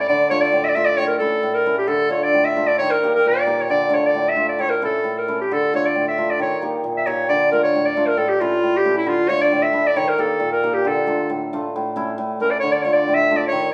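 Straight 2/4 at 134 BPM drives this festive yet bittersweet klezmer passage in D harmonic minor, cut from a longer piece, where a clear, classical-style solo clarinet carries the melody from E4 to E5 over a shimmering, ringing hammered dulcimer accompaniment, both up front and played live together in a large studio with moderate reverb, as the harmony circles Dm, A and Eb through a repeated section.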